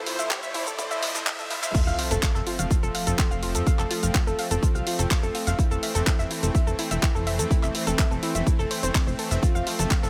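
A punchy, up-front electronic kick anchors this uplifting progressive house excerpt at 125 BPM in 4/4, its layered sound re-recorded in a small room. A riser and sub drop sit in the background through the build, leading into the drop at 1.7 seconds, and a plucky analog bass joins at 1.9 seconds, funky and wave-folded across F1 to F2 with sidechain pumping. Above it, a soft, round pluck plays dark arpeggios through chorus and delay, while a lush supersaw pad holds detuned, sustained chords with sidechain pumping, moving between Am/F and F. The house kit adds crash, handclaps, hi-hat and shaker, with pumping on its hats, percussion and cymbals, and a very quiet vintage brush kit brings a natural hi-hat and a medium-tuned snare with a rolled-off top. Light digital ambience gives the expansive F major mix a sense of space.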